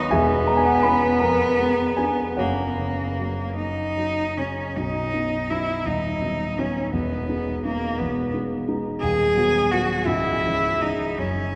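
Serene and tender, this short passage from a longer romantic work pairs a single bowed cello with a concert grand piano in a lilting 6/8, shaped by a flexible rubato. The cello carries the melody from start to finish in a clear, smooth and even voice, colored by vibrato and sitting up front in a slightly distant way. The piano accompanies throughout with a warm tone, deep bass and notes of short sustain, reaching from very low in the keyboard into its upper middle. At 4.8 seconds the music moves from its opening phrase into a second section, where the harmony settles onto the home chord before moving through a major-seventh color toward a gentle minor close. A long cathedral-like reverb, with the sound of a church or concert hall, wraps both instruments in a soft, hallowed wash.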